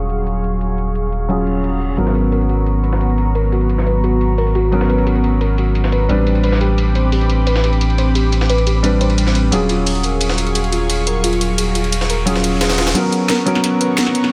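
Over a straight four-beat drum and bass groove, an electronic kit with a cracking snare and hi-hat drives this soulful, lush liquid drum and bass cut from a longer piece, joined at 2.0 seconds by a gritty, pitched-up jungle sampler-style kit whose overdriven ride, hats and high-tuned snare sit lower in the mix. A worn baby grand piano with tape echo and a breathy, detuned pad with chorus hold the soft chord bed moving through D#m11, G#m11 and Am11, while a round sine sub bass sits up front and a ringing, harp-like synth pluck traces mellow arpeggios through chorus and digital delay. A filter sweep opens the track under light reverb, a very quiet reverse cymbal and riser mark the entry of the second drum kit, and a build-up from 13.0 seconds closes the cut.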